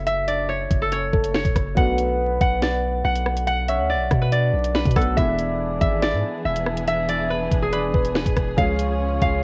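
Ominous and cold, this half-time drill hip hop excerpt at 141 BPM sets an up-front fingerpicked concert harp melody over a knocking, sharp drill kit and a deep, decaying sine 808 bass, with a round octave-layered synth lead carrying chorus, vibrato and analog delay, a felt-muted upright piano murmuring in the background, and a distant, woody bowed string section entering at 5.2 seconds, all moving through F#m7, Bm7 and E7 to C# in a dry home cassette recording dusted with vinyl crackle.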